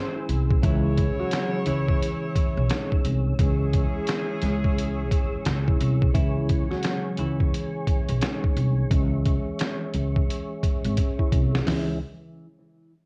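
A gritty, sampler-style boom-bap drum kit sits up front, its pitched-down, compressed sound carrying a thumpy kick, a medium-tuned snare, rim clicks and hi-hat that were re-recorded in a large room and dusted with cassette tape grit. This dark hip hop excerpt moves at 87 BPM in 4/4 with a 62% swing on the sixteenths, holding a C# minor chord in a tuning set slightly flat of standard. A woody pizzicato upright bass with steel strings anchors the low end. A hollow-body semi-hollow electric guitar, played clean and fingered with a dark tone, carries the melody through phaser and analog delay. Beneath it, a mellow tine electric piano sits in the background, while a soft, flute-like tonewheel organ sustains percussive chords through chorus vibrato, a slow rotary speaker and plate reverb. A tight, warm pop-style horn section punctuates the opening with vibrato-tinged stabs until 5.8 s, a filter sweep begins at 6.2 s, and a drum fill at 11.0 s leads into the final moments of this home cassette recording with light reverb.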